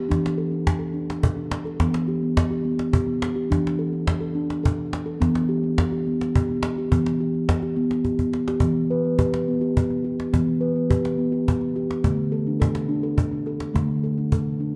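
World meditative tuned percussion in E minor pentatonic, this gentle, hypnotic passage, cut from a longer piece, moves at 70 BPM in a straight 6/8. Up front, a steel tongue drum played with soft rubber mallets spins mellow, round, ringing arpeggios between D3 and B4 over chords that drift from D5/E and G/E to Em and D5. A woody, compressed cajon with faint snares and a saturated edge keeps the pulse and adds a short drum fill at 8.1 seconds, and the whole sits in a wet echo-chamber reverb with small-room ambience, all within a dark, warm production.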